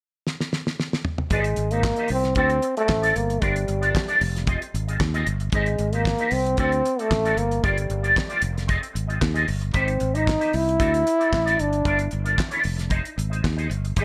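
A light reverb and small room ambience give this disco excerpt an intimate, close sound, with the drums, bass and trombone up front. Set at 114 BPM in a straight 4/4 and in F dorian, it opens with a damped 70s drum kit playing a fill from 0.3 to 1.3 seconds; its fat snare, tight kick, toms, hi-hat and handclaps sound dry, dark and smooth with a rolled-off top. At 1.3 seconds the rest of the band enters over a repeating Abmaj7, D7, Gm7, Fm7 progression, anchored by a fingered electric bass that is bright, direct, growly and punchy. A clean, picked electric guitar, shaded by an envelope filter and an ensemble chorus, supplies a shadowy accompaniment. Over this, a mellow trombone takes the jazz-style solo melody with vibrato, scooped notes and tape echo, giving the groove a danceable, glamorous mood.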